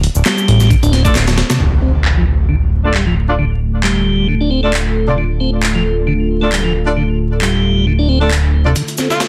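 A dense, heavily limited master laced with vinyl crackle and a moderate studio reverb frames this raw, swaggering breakbeat fragment, cut from a longer piece, moving at 134 BPM in 4/4 with a 16th-note swing in D minor pentatonic. A fat, detuned sawtooth bass sits up front with a plucky filter, while a gritty, sampler-style breakbeat kit with a thumpy kick and a medium-tuned snare drives the opening before dropping out and returning at 8.8 seconds; layered, overdriven electronic shaker and handclaps run throughout. A piping tonewheel organ with key click, a stopped rotary speaker and 12-bit grit carries the riff under filter sweeps, joined by tight, close-miked horn stabs with light vibrato. From 1.6 seconds, a swirling, detuned analog pad with phaser, chorus and sidechain pumping spreads sustained chords as an electronic impact and riser land on the Dm change. At 9.1 seconds, a raspy, edgy alto saxophone with an old-record tone and delay punches in with a single brief note.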